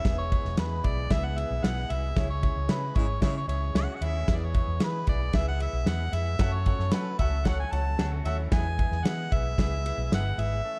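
A mellow, punchy harmonica with scooped notes and a slapback echo carries the melody in this danceable, uptempo 1960s-style soul cut, over a tight, up-front drum kit and a round, foam-muted electric bass. A woody upright piano supplies accompaniment while a gritty, overdriven tonewheel organ holds sustained chords in the background, and a lo-fi, slightly broken-up electric guitar drops in its riff only in brief bursts. A clear saxophone section adds a second line from 2.2 to 3.4 seconds as the band hits accents, all within a dark, warm production with light reverb.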